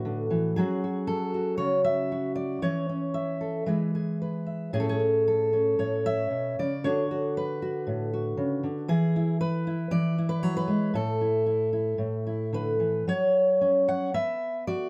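A small room's moderate reverb, with a short 0.6-second decay, surrounds a full-bodied, up-front steel-string acoustic guitar in this brief folk excerpt cut from a longer piece. The solo fingerpicked dreadnought carries the whole performance in A major at 116 BPM in 4/4, played with a rubato feel and tuned slightly high to A4 = 442 Hz. Its range runs from A2 up to F#5, giving the single instrument both low and high registers. The harmony moves from D6 and F#m through A/E, E, Aadd9, Dmaj7 and E7 to A5, and a new passage at 13.1 seconds shifts to F#5 and then Bm. The mood is hopeful and peaceful, with the guitar's rich, close tone making the short piece feel intimate.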